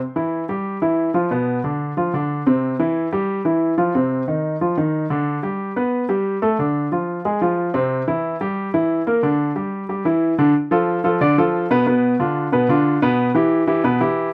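Jazz at a brisk 182 BPM in a straight 4/4, this short, driving and fiery cut from a longer piece features a solo baby grand piano, natural and up front, ranging from B2 to D5. The harmony moves restlessly through chords such as Em, Bdim, Gadd9/D, Fm and C7, with a second section arriving at 10.5 seconds that returns to Dm and Bdim before settling on Em/B. A moderate club reverb gives the piano a lively sense of room.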